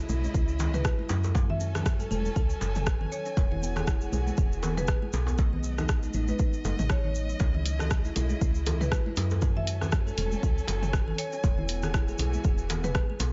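Rich, bowed chamber strings, a ringing thumb-plucked kalimba and a soft, round FM bass open together at the start of this driving, spiritual afro house excerpt, all three breathing with sidechain pumping at 119 BPM in 4/4 with a 57% swing on the 16ths. The strings hold focused, vibrato-laden chords while the hollow-toned kalimba spins arpeggios through tape echo, and the dark, fast-attack bass sits prominently underneath. Acoustic hand percussion arrives almost at once: grainy, bright cabasa, congas set back in the mix, and a tight, cracking djembe with a vintage, band-limited edge. A deep, layered electronic kick lands up front at 0.3 s. At 0.7 s, a smooth marimba played with medium hard mallets on rosewood bars adds a melody through tape echo, alongside a tape-warm deep house kit of hi-hat, rim click and toms. The harmony moves from C#m7 through F#m, E and B7 before returning to C#m, F#m and E, all within a small room reverb and a mellow top end.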